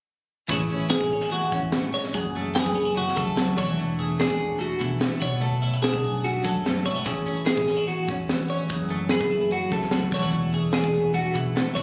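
A straight 4/4 pulse at 146 BPM drives this wistful, bright slice of math rock and midwest emo in A major, cut from a longer piece. A crisp fusion drum kit sits up front with a high-tuned snare, punchy kick and hi-hat, its airy, polished tone suggesting a studio room. Beneath it, a hollow-body short-scale fingered electric bass adds a dark, round, amped low end, while a twelve-string electric guitar plays clean, picked accompaniment colored by tremolo. A second twelve-string electric guitar joins at 0.9 seconds with twangy, compressed arpeggios sent through analog delay. The chords cycle from Amaj7 through F#m9 and E9sus4 to Bm7 before returning. The sound carries light reverb and club ambience, like a phone capture from inside the room, with lossy compression artefacts.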